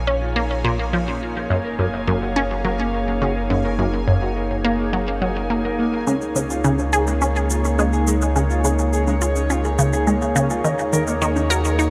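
Mysterious and hypnotic, this ambient, sequencer-driven space music has a juicy, squelchy resonant blip pluck riff with phaser and delay up front over a deep sub bass and an evolving, morphing wavetable pad of sustained chords, while a bubbling stepped-filter texture and a mellow, clean electric guitar fading in with arpeggios sit in the background, shaker and congas enter at 6.1 s, and a huge ambient reverb washes over the whole piece.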